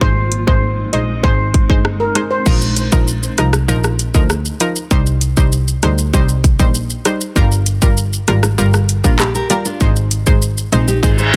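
An overdriven, up-front island pop drum kit with tight kick, metallic hats, handclaps, rim click, shaker and crash drives this bouncy, hypnotic dancehall excerpt, over a bowed, focused double bass and a round, warbling analog pluck with chorus running throughout. A shimmering steel pan melody with digital delay and a cloudy, sidechain-pumped granular pad sound only in the opening moments, while low-tuned bongos enter very quietly at 8.3 seconds and fingerpicked nylon-string guitar arpeggios join at 9.0 seconds. A reverse cymbal lands at 11.2 seconds at the close of this dense, heavily limited small-room mix, cut from a longer piece.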